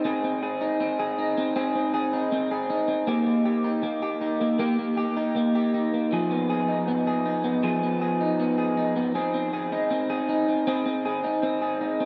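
Ethereal and dreamy, this short dream pop excerpt at 79 BPM in 4/4 features a lone electric guitar through a small old amp, its picked, slightly broken-up tone sitting up front with analog chorus and a diffuse ambient delay. The chords move from Ab/C to Eb/Bb, then Abm6 and back home to Ab, all within about 12.1 seconds. A wet plate reverb soaks the mix, leaving the compressed guitar hanging in a hazy, floating space.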